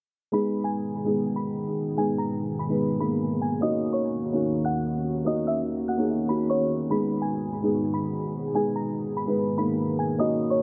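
A felt-muted upright piano sits up front in this eerie, menacing half-time hip hop excerpt at 146 BPM in G# minor, its soft, intimate tone carrying audible action noise as it accompanies from 0.3 seconds through low-pass filtering and dub echo. Above it, a delicate synth tine bell tinkles the melody with chorus and dub echo, while a glassy FM pad enters at 0.8 seconds with slow-attack, ethereal sustained chords through ensemble chorus and its own reverb. The G#m to D#m7 harmony plays out in a small, echo-heavy room under a filter sweep, with the mix capped at 8.0 kHz and tuned to A4 = 437 Hz.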